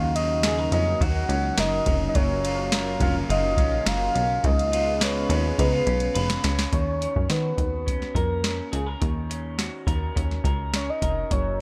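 A straight 4/4 groove from a soft vintage rhythm box, its deep kick, crisp snare and metallic hats up front, drives this hazy, sunny indie and bedroom pop excerpt alongside a punchy, funky analog bass with a filter pluck, while a twangy, slightly broken-up electric guitar through a small old amp plays lo-fi picked accompaniment with subtle chorus and vibrato, a round, dark octave-layered synth lead with tape echo carries the melody, and a lush, warbling detuned pad holds chords in the background until 6.7 s, where a drum fill running from 5.6 s ends, as the harmony moves from F#maj7 and C#7 to D#m7 in a dry, close sound.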